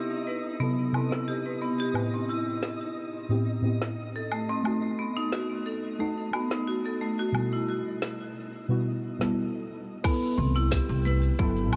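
A dark, warm production steeped in huge ambient reverb carries this earthy, mystical organic downtempo excerpt at 89 BPM with a light 16th-note swing, where deep, detuned chord stabs with chorus, sidechain pumping and digital delay move through Cmaj7, Am7, B7 and Emadd9/B beneath bright, airy hard-mallet marimba arpeggios and a faint twinkling granular shimmer, a filtered deep house kit with woody snare, smooth hats, cabasa and woodblock joins at 0.9 seconds, and after a brief stop an overdriven electronic kick arrives at 10.0 seconds, followed at 10.4 seconds by an up-front pizzicato upright bass and very quiet, dry congas.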